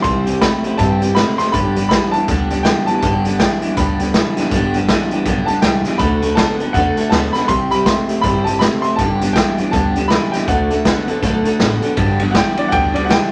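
A clear, woody upright piano carries the melody high over this upbeat, rowdy rockabilly clip in G major, swinging at 161 BPM, and it steps forward for a short solo at 12.0 seconds. Beneath it, a twangy, slightly broken-up electric guitar riff through a small old amp and a bright, full-bodied picked steel-string acoustic guitar ride a C, G and D progression, while a thumpy pizzicato upright bass with gut strings anchors the low end. Up front, a raw garage drum kit plays hi-hat, ride, snare and a boomy kick, its saturated, gritty sound pumping in a small room with dark cymbals, all set in moderate studio reverb.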